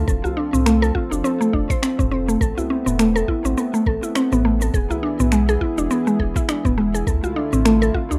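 A rough home-demo mix with moderate studio reverb gives this short organic downtempo excerpt a close, slightly unpolished feel, and its mood is meditative and mystical. Up front, a woody, mallet-like FM synth pluck spins arpeggios with a round, percussive attack and short decay, thickened by chorus and trailed by digital delay. Beneath it, a vintage analog pad holds smooth, warbling sawtooth chords with a soft attack and chorus, breathing with sidechain pumping, while a deep sine sub bass sits round and sustained, pumping in the same way. A soft, tape-warm electronic kick enters at 0.1 seconds alongside a quiet produced kit of finger snaps, shaker and toms, both re-recorded in a small room, and a very quiet medium-tuned acoustic djembe joins at 0.2 seconds. The lightly swung groove moves through F6, Amadd9, E7 and Dm7, giving the passage its hazy, searching color.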